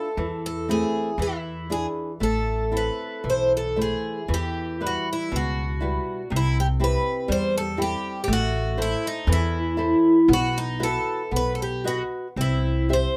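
A mournful, longing fado-style ballad in a slow, rubato 2/4, where a picked twelve-string acoustic guitar carries the shimmering, octave-doubled melody over fingerpicked flamenco guitar and a dark, thumpy pizzicato upright bass on gut strings, all up front in light reverb as the harmony turns to a new minor center at 4.3 s in this short cut from a longer piece.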